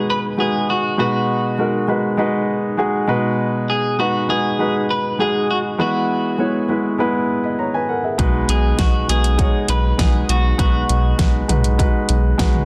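Piano-driven pop in B major at 100 BPM, tuned to A4 = 437 Hz, this hopeful, anthemic section cut from a longer piece opens with a polished, up-front grand piano in plate reverb supporting a clean, picked electric guitar melody set in spring and plate reverb. At 8.2 seconds a round, deep analog bass blending sawtooth and sine tones arrives alongside a layered electronic pop drum kit with a punchy kick, a fat snare and metallic hats, and the guitar stops at 11.8 seconds. The mix sits in a moderate large studio room and has a dense, heavily limited modern master.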